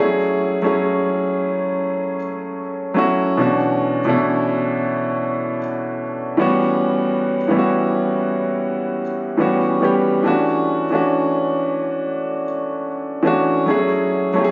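A solo grand piano opens this late-night, moody R&B excerpt, sitting up front with an intimate, natural tone, long sustain and audible action noise. At a slow 70 BPM in 4/4 with a light sixteenth-note swing, it moves through lush extended harmony in F# minor, from F#m9 to Bm11 at 3.4 seconds, then A13, Dmaj9, and back to F#m9 near 13.7 seconds. The playing stays between A2 and G#4, keeping the voicings in a mellow middle register, and a touch of delay trails behind the notes. The recording has the feel of a phone capturing a small room, with light reverb, compression and a softened top end that keeps the sound hazy and close. The passage runs for 14.5 seconds, a brief slice of a longer piece.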